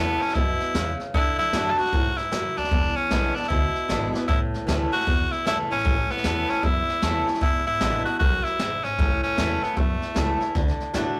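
Swinging eighths at 153 BPM in 4/4 drive this rowdy, upbeat rockabilly snippet in A major, where a raspy, gritty tenor saxophone with vibrato leads forcefully up front over a bright, boxy picked acoustic guitar, a woody pizzicato upright bass on gut strings, and a brushed drum kit with a boomy kick and high-tuned snare that enters at 0.2 s and drops a fill at 4.1 s, all moving through A, D and E7 in a rough rehearsal-room sound with light reverb and tube saturation.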